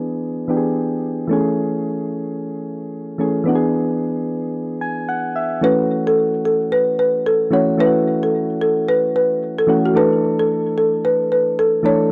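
A swung afrobeats groove at 111 BPM in 4/4 carries this breezy, joyful excerpt, cut from a longer piece, in A major and tuned slightly sharp of concert pitch. Soft, electric-piano-like synth keys play the accompaniment throughout, their round, warbling tone thickened by chorus and rounded off by a low-pass filter, with a filter sweep across the opening 5.6 seconds and a short fill just before the second section. Chords move from E7 to Amaj7 and back, then settle onto A6 and finally Dsus2. At 5.6 seconds a folk marimba with medium mallets enters up front with the melody, its woody, rustic hardwood bars sounding dry against the mellow keys. The recording has a gritty hardware character with light reverb and a touch of studio ambience.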